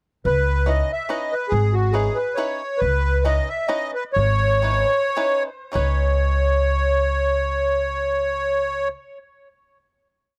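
A pizzicato upright bass opens this short, complete musette waltz at 0.2 s, playing root and fifth on the main beats with a woody, dark tone, steel strings and a touch of tube saturation, set up front. The accordion enters almost at once at 0.3 s and carries a reedy, sweet, dark, smooth melody built from motifs in period phrases, its light tremolo tuning and tape echo giving the bittersweet, whirling mood a dusky edge. A twangy bluegrass banjo, played with fingerpicks, joins at 0.7 s with bright, percussive backbeat chords in close voicing, sitting lower in the mix beneath the up-front accordion. In 3/4 with lightly swung eighths in C# minor, the tempo moves between 99 and 142 BPM, slowing from 2.8 to 5.7 s as the opening C#m9 harmony gives way to a C#7sus2 final chord. The sound is dry and gritty with light reverb, like a hardware recording.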